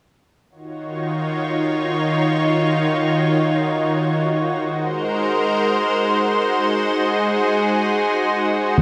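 Floating in free time with an unmeasured pulse, this moody, nocturnal synthwave fragment, cut from a longer piece, drifts rather than drives. A lush unison pad carries the whole passage from 0.5 to 8.8 seconds, holding sustained chords that move from Ebm7 to Ab7 at 4.6 seconds. Its tone is thick and bright, blending detuned sawtooth and square waves with a slow attack and a shimmering chorus, and it sits up front in the mix. At 8.8 seconds a fat analog bass arrives on a low Eb, its saturated, detuned sawtooth sound hitting with a fast attack and sitting louder than the pad. A wet hall reverb with a long tail wraps the recording in a spacious, after-hours atmosphere.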